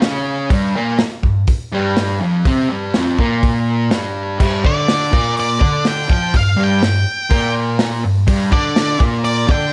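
Gritty and menacing, this short garage rock excerpt in G minor drives at 124 BPM in a straight 4/4, with a picked, double-tracked fuzz guitar riff churning on a G minor chord over a crunchy, saturated breakbeat drum kit of tight kick, medium-tuned snare, hi-hat and dark crash cymbal, and at 4.7 seconds a dark octave-fuzz lead guitar cuts in with a high melody above them, all set up front in a small stone room.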